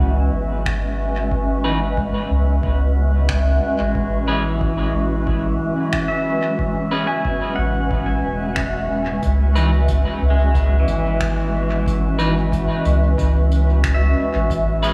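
A cloudy, blurred granular pad sits up front, holding sustained chords that slowly evolve through a lush chorus and their own built-in reverb, setting a deep, spacious mood for this fragment of ambient dub in C# minor at 91 BPM, with a light swing on the 16ths and a tuning of A4 = 435 Hz. Beneath it, a round, soft sub bass with a fast attack anchors the low end. A pedal steel guitar, played with fingerpicks and slide, spins clean, twangy arpeggios with volume swells, softened by a low-pass filter and trailed by tape echo. An overdriven analog kick thumps in the background, and from 0.7 seconds a distant, roomy brush kit adds finger snaps and hi-hat through dub echo. At 1.6 seconds a bright, slightly broken-up electric guitar joins with scooped, picked stabs, also filtered and echoed. The harmony moves from C#m7 to Amaj9 and back, all bathed in a dreamy, reverb-soaked mix with a moderate church-like space.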